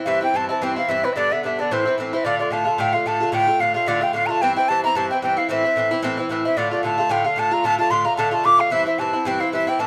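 A light reverb gives this short fragment of a longer Celtic folk piece a sense of space, while the picked Irish bouzouki sits up front with a metallic ring from its double strings. The mood is wild, dark and lively, driven at a brisk 223 BPM in 4/4 with a slight swing on the eighth notes, and it is centred on D minor with tuning slightly below standard pitch. A bright wooden flute carries the melody from B4 up to D6, its airy, straight tone and crisp attack making for expressive playing that stands just ahead of the accompaniment. Beneath it, the acoustic bouzouki covers a range from G2 to F4, moving from C through G and Am in the opening moments. At 2.3 seconds the harmony settles onto Dm, and the second passage cycles through C, Am and Dm before reaching C again at 8.7 seconds, with both instruments playing throughout the 9.9 seconds.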